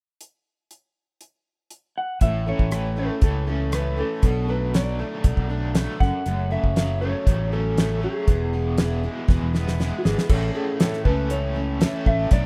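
A damped 70s drum kit sets a straight 4/4 groove at 119 BPM, its fat snare and tight kick up front, and the dark-toned electric slide guitar enters at 2.0 s with a compressed, tape-echoed melody. From 2.2 s a growly fingered bass, a bright picked dreadnought acoustic guitar and a crunchy, double-tracked overdriven guitar riff with tremolo join over A, Bm7, F#m and E, before a drum fill at 9.3 s returns the progression to A. This hopeful, nostalgic folk rock and heartland rock in A major comes through as a rough home demo mix with studio reverb, cut from a longer piece.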